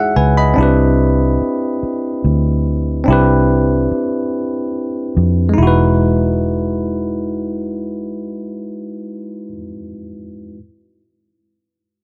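Sensual and intimate, this slow six-eight R&B excerpt moves at 48 BPM, with a bell-like tine electric piano voicing lush chords that shift from Emaj9 to Cmaj9 and back to Emaj9 at 5.6 seconds. Beneath it, a vintage muted fingered electric bass sits up front with a dark, round, punchy tone, while the piano stays bright and clean. Light reverb adds a soft sense of space to the close, unhurried groove.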